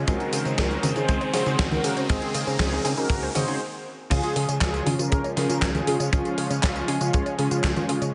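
A mellow, brassy synth lead carries the melody from the first moment, detuned and round with vibrato, chorus and tape echo. Beneath it sits a lush, thick unison pad holding sustained chords, a warbly, dusty pluck tracing quiet lo-fi arpeggios, and a chorused synth bass with a glossy, retro pulse tone. A direct-recorded clean electric guitar adds bright, compressed stabs in the background, softened by a low-pass filter and tape echo. An electronic riser builds until 3.6 seconds, followed by a brief stop before the second section arrives at 4.1 seconds. Throughout, a sampler-style 80s drum machine supplies overdriven, gated-reverb snare, handclaps, congas, hi-hat, tambourine and crash, under a tight, airy kick mixed up front. The result is playful, sunny italo disco with a straight feel and light room reverb.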